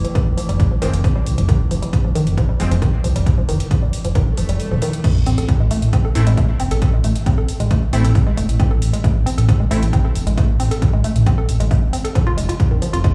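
A woody, wave-folded pluck riff opens this excerpt of driving, peak-time techno at 135 BPM in A harmonic minor, its mellow, percussive tone shaded by chorus and digital delay and pumping against the kick. Beneath it, an eerie, nasal FM drone with metallic, inharmonic colour sits in the background with chorus and its own reverb until 5.1 seconds, while a techno kit adds metallic hats and crash cymbal, both pumping to the sidechain. A punchy, up-front electronic kick and a deep, rumbling detuned saw bass arrive almost at once, the bass dark and beating as it pumps. Brief supersaw stabs, unison-detuned and delayed, cut in over an F5 harmony before a swell, break and sub drop in the background lead to the drop at 5.0 seconds, where the harmony moves to A minor and the stabs return. The mood is dark and intense, with a mostly dry sound carrying the feel of a big system played in a bare room.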